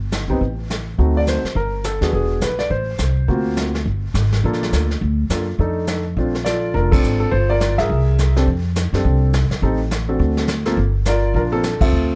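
An intimate concert grand piano carries the melody up front, its action noise audible and its deep low register touched by plate reverb, in a cool, moody jazz piano trio with a swung feel, cut from a longer piece. A woody pizzicato upright bass sits forward beneath it, while a vintage brush kit with a punchy kick, medium-tuned snare, hi-hat and crash adds a rolled-off, dusky pulse. The harmony moves through altered dominant chords into a new passage at 6.2 seconds, and the trio hits accents together at 6.9 and 11.8 seconds in a dark, dry production.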